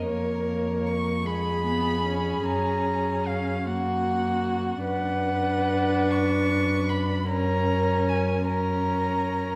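Warm and lyrical, this slow, rubato romantic movement for muted string quartet in F# major sways in 6/8 at 50 BPM, with a dark, con sordino first violin singing the vibrato-rich melody up front, a second violin gliding with portamento beneath it, a softly attacked viola filling the accompaniment, and a veiled, lightly vibrating cello holding the bass, all heard from further back in a reverberant recital hall as the harmony moves from C#7/E# to F#, then Bm/F# at 4.8 seconds and back to F# in this fragment of a longer piece.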